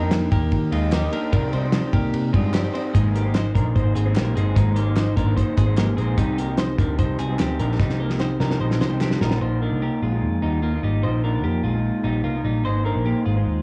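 A straight 4/4 pulse at 148 BPM drives this restless, wistful slice of jangly indie pop, cut from a longer piece. Up front, a cloth-damped drum kit thuds with a fat snare, tight kick and dark cymbals, roughened by 12-bit sampler grit, and plays a fill from 7.8 to 9.4 seconds before dropping out. A very quiet, hollow group handclap sits close and dry beside the kit, while a round, foam-muted picked bass punches low and dark throughout. A bright, twangy twelve-string electric guitar spins compressed arpeggios through analog delay over a slightly broken-up, lo-fi electric guitar from a small old amp carrying the accompaniment. The chords move from Eb through Cmadd9 and Abadd9 to Cm before settling on Bbsus4 at 9.2 seconds, and the whole mix has light studio reverb and the worn, warbling pitch drift of old cassette tape.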